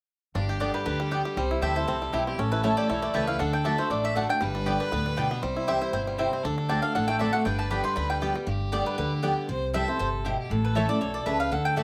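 A moderate studio reverb gives this driving, joyful bluegrass excerpt a sense of room, with a mandolin up front carrying the melody at 236 BPM in G major and a light swing on the eighths. A second mandolin adds woody stabs, the fingerpicked banjo plays twangy, percussive arpeggios until 8.5 s, and a distant, biting fiddle with light vibrato plays a second line. Underneath, a bright dreadnought acoustic guitar picks the accompaniment and a pizzicato upright bass holds the low end as the chords move through G, C, A and D.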